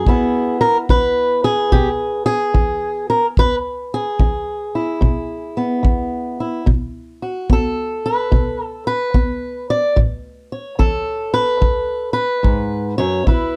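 Acoustic country blues at a rollicking, swaggering 73 BPM in E major, played with swung eighths in 4/4. A boxy, fingerpicked swing-style acoustic guitar sits up front carrying the melody, while a tight, small-room kick drum with brushes keeps time alongside it. The short fragment, cut from a longer piece, moves from E to B5 at 6.7 seconds and on to A at 10.0 seconds, all wrapped in light reverb and a dark production.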